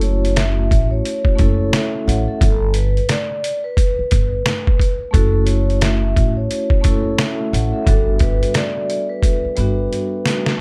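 This boom-bap hip-hop excerpt opens with everything at once: a gritty, pitched-down sampler-style drum kit with a thumpy kick, medium-tuned snare and hi-hat, set up front with a swung sixteenth-note feel. An upright bass played pizzicato sits low and woody beside it, its steel strings giving a warm, thumping tone until it drops out at 9.9 seconds. Two vibraphones struck with soft mallets carry the harmony and tune, their metallic, ringing notes shimmering with a slow motor vibrato and filtered at both ends of the spectrum. The accompanying vibraphone has a cassette-tape coloring, while the melody vibraphone carries the tune with an airy, mellow character. The chords move between F#m7 and G, settling on Gmaj13, and a drum fill arrives at 9.2 seconds. The dark, dry production keeps the reflective mood close and intimate.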